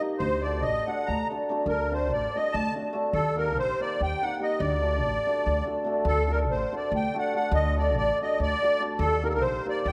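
Balkan folk in the manner of a wedding band, this short excerpt, cut from a longer piece, moves in a brisk 7/8 with a straight feel and a virtuosic, bittersweet mood. A hammered dulcimer opens alone at 0.0 seconds, its mellow, ringing tone laying down the accompaniment before the musette accordion and upright bass join at 0.2 seconds. The accordion carries the melody up front, its reedy musette tuning giving a shimmering, airy edge to the line. Beneath it, the pizzicato upright bass sits close and woody, its steel strings lending a warm, acoustic body to the low end. The harmony shifts between D and Eb as the same section plays twice, all set in a moderate stage reverb that lets the sound breathe.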